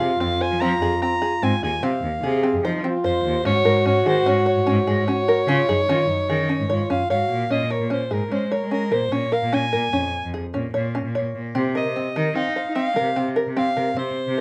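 Hypnotic and restless, this contemporary chamber piece moves in an uneven 5/4 metre with a straight feel, and it is cut from a longer work. A warm soprano saxophone carries the melody up front in a classical style, with vibrato and a punchy attack, while a French horn plays a clear second line with light vibrato until it drops out at 7.5 s. Beneath them, an open-back banjo plays fingerpicked arpeggios that sound plunky and twangy, and a single bowed cello holds the bass with a smooth, even tone and vibrato. The harmony moves from Fm to Ab7sus4 and then, as the second section begins at 7.5 s, to Bbm7 and Fsus4/C. A moderate studio reverb gives the small ensemble some room around it.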